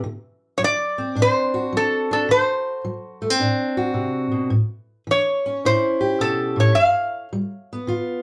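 The fingerpicked steel-string acoustic guitar opens this short cut from a longer acoustic country blues piece, its boxy, up-front tone carrying audible finger squeak as it lays down the accompaniment in D mixolydian. At 0.6 seconds a metal-body resonator slide guitar enters with the melody, played with fingerpicks and sounding metallic and nasal as it rides high over the accompaniment until 7.8 seconds. The mood is rollicking and swaggering, moving at 107 BPM in 4/4 with a swing feel on the eighth notes. The harmony travels from D7 to A7 and then G7. The two guitars sound like a duo playing live together in one room, with a moderately reverberant studio ambience around them.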